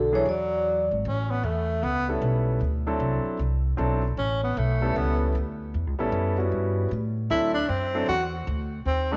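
A moderate echo-chamber reverb gives this short excerpt a roomy, airy glow. It is relaxed, swinging small-group jazz in the swing-and-bop vein, moving at 153 BPM in 4/4 in A mixolydian over E9, A9 and D9 chords. Soft-mallet vibraphone carries the melody only briefly with a mellow, ringing tone and slow motor vibrato, stopping at 0.9 seconds. A breathy, whispered tenor saxophone sits up front with intimate vibrato and a soft attack, taking a solo from 1.0 seconds to the end. Underneath, a woody, bright pizzicato upright bass holds the low end, while a clear concert grand piano supplies polished, present accompaniment with long sustain, deep bass and audible action noise.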